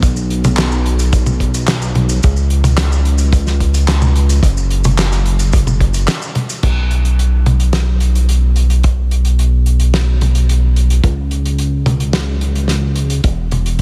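Synthwave at 109 BPM in a straight 4/4, dreamy and uplifting, cut from a longer piece. A glossy, retro synth bass with sawtooth and pulse-wave tones, pulse-width modulation, ring modulation and a plucky filter sits up front with a mellow chorus. A tight, mid-forward acoustic kick and a small-room soul drum kit with a fat snare, dark cymbals, hi-hat, shaker, handclaps, toms and crash support it. A brief break at 6.1 seconds leads into a new section at 6.6 seconds, all under a light reverb.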